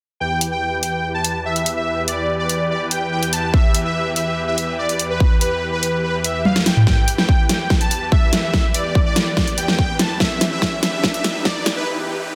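A dense, heavily limited modern master with light digital ambience frames this aggressive, menacing slice of heavy wobble dubstep, which moves in a half-time feel. Up front, a soft supersaw carries the melody in a smooth, detuned sawtooth voice colored by cassette tape and dub echo. Beneath it, lush supersaw chords sustain, pumping with the sidechain behind a low-pass filter. An overdriven dubstep drum kit with a huge snare, bright hats and toms sounds re-recorded in a small room, and a punchy electronic kick joins at 3.5 seconds. A filter sweep shapes the supersaw through the opening. A drum fill at 6.5 seconds then leads into a build-up with further sweeping and fills, a background riser enters at 9.1 seconds, and this passage from a longer piece closes on a brief break.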